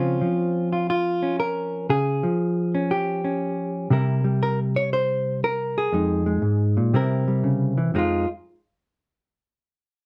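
A dark, warm studio sound with moderate reverb frames this short swinging solo jazz passage, cut from a longer piece, with a late-night mood. A single clean, compressed hollow-body electric guitar sits up front, fingered across a range from F2 to Db5 over a swung 4/4 feel. It moves through Dbmaj7, C7 and Fm7 harmony before falling silent at 8.3 seconds.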